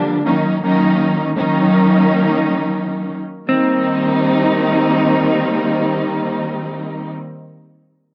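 A swung sixteenth-note hip hop groove sets a reflective yet tough mood in this short fragment, where a veiled, lush muted string section, bowed with vibrato and up front through cassette-tape colouring and plate reverb, carries the accompaniment from Ebm7 to Cm7, while a clean, fingered electric guitar adds a brief dark melody on C4 from 3.5 to 5.6 seconds within a dusky, moderately reverberant mix.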